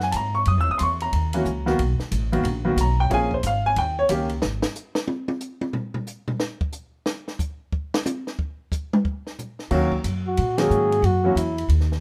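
Swinging and cool, this 12-second cut from a longer small-group swing and bop jazz piece opens with clear baby grand piano and woody, pizzicato upright bass over a dry, compact cocktail drum kit with dark cymbals, gives way to a drum solo from 4.4 to 9.7 seconds, then brings the band back at 9.7 seconds, with an accent at 10.5 seconds as a dark, punchy flugelhorn with vibrato takes a brief melody in light reverb.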